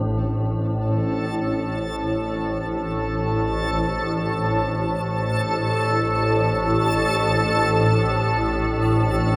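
Dark and cavernous, this free-time dark ambient drone in A minor opens with a swarming, detuned granular drone up front in the low register and a moody analog pad fading in behind it with lush chorus on a sustained A minor chord, before a reversed, luminous swelling texture joins at 1.0 s, all bathed in a huge, wet reverb in a short cut from a longer piece.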